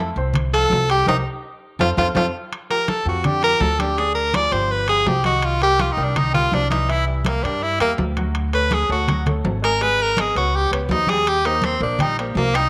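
Sophisticated and danceable, this brief excerpt of Afro-Cuban jazz in straight 4/4 puts an edgy, forceful tenor saxophone up front, soloing with vibrato and scooped notes through a slapback echo from 0.5 seconds onward. Underneath, a pizzicato upright bass with woody steel strings and an intimate baby grand piano with audible action noise and short sustain carry the harmony, while soft-handed, damped congas and ringing metal-shell timbales sit in the background. A band accent at 1.1 seconds and a drum fill at 2.0 seconds punctuate the opening, and the whole ensemble sits in a wet spring reverb with small room ambience.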